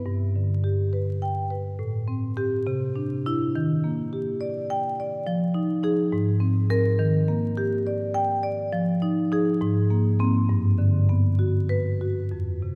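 A solo marimba played with medium hard mallets carries this contemporary classical piece, its tone full and close-miked, sitting up front with a dry presence. The mood is reflective and hypnotic, unfolding in a rubato 6/8 around 69 dotted-quarter beats per minute, with the instrument tuned to A4 = 442 Hz and spanning F2 to G5. A church reverb with a 3.0 second decay surrounds the playing, and the dark, warm production carries a vinyl crackle. The harmony drifts from G through Am7 and Cadd9 into Ebmaj7, then moves through Fm7, Abadd9 and D#maj7, returns to Fm7 and G#add9, and arrives on Gmaj7 near 10.5 seconds. This 12.8 second passage is cut from a longer piece.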